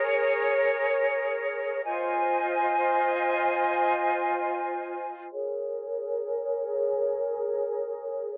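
A large flute ensemble plays alone and up front in this melancholic, spacious hip hop fragment, its airy, expressive lines shaded with vibrato and tongued phrasing and trailed by digital delay and light studio reverb, all set inside a dark, low-pass-filtered production that brings in a filter sweep from 5.3 seconds until the close at 8.4 seconds.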